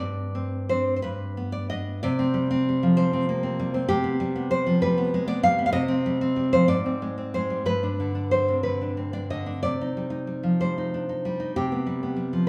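A 6/8 pulse of roughly 56-67 BPM, counted in dotted quarters and stretched by rubato, carries this intimate, melancholic romantic piece in C minor for solo nylon-string guitar, whose fingerpicked, full-bodied, deep classical tone sits up front and glows through a wet recital-hall reverb, moving from a brief opening section into a second one at 2.0 seconds where harmonies such as Abmaj7#11 colour the minor-key mood before the excerpt is cut from the longer work at 12.5 seconds.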